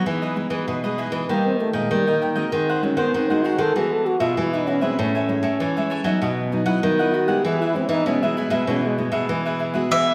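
Festive and joyful, this short samba excerpt sets a crisp, picked cavaquinho over two fingerpicked nylon-string guitars, one carrying the chords up front and the other holding a full-bodied, deep bass line with audible finger squeak. From 1.3 s a dark, breathy trombone takes a whispered, intimate solo in jazz style, with vibrato, scooped notes and a soft attack, before a mellow bowl-back mandolin sounds a single up-front note at 9.9 s. A recital-hall reverb gives the ensemble a spacious church-like ambience as the harmony moves from Emaj7 through Amaj7 and B to a closing E.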